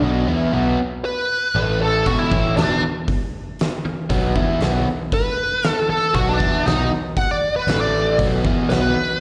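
A swaggering, raunchy blues rock power trio and southern rock cut where a biting, double-tracked overdriven guitar riff with spring reverb and slapback echo and a round, foam-muted vintage bass open together, a bluesy lead guitar with wah and distortion enters at 1.1 seconds, and an oversized low-tuned drum kit with a fat snare and boomy kick joins at 2.1 seconds, all heard through a live venue's PA in recital hall reverb over power chords on B, A and E.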